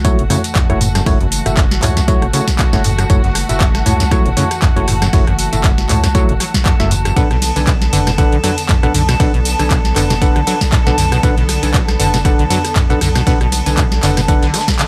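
Trippy and hypnotic, this acid house excerpt moves at 118 BPM in F# minor with a 16th-note swing, shifting from F#m7 to Bm7 as a punchy electronic kick, a booming analog drum machine with crisp snare, metallic hats, claps, rim clicks, tambourine and toms, and a very quiet, gritty sampler-style kit drive the groove. Beneath them a rubbery, resonant acid bass riff with tube saturation, chorus and tape echo sits back in the mix over a thick, saturated sine sub bass, while hollow, organ-like stabs with chorus and echo punctuate the beat. Distant bowed strings hold sustained chords and a warbling, detuned tape-like pad enters at 0.4 s, both pumping against the kick to give the loop its nostalgic, lo-fi haze.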